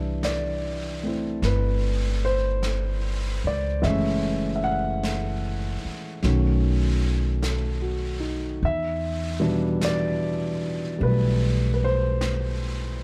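Intimate and tender, this brief jazz ballad fragment drifts along at an unhurried pace with a gentle swing on the eighth notes. A dark, mellow baby grand piano carries the accompaniment, its vintage tone and long sustain sitting up front in the mix. An upright bass, plucked on steel strings, gives a woody, thumpy low end that feels close and present. A brushed drum kit joins at 0.2 s with smooth snare and hi-hat, and sits further back behind the piano and bass. The harmony moves from Cadd9 through F#m9 and B7 to Em7, and the close, detailed recording with very little reverb keeps the whole trio sounding near and personal.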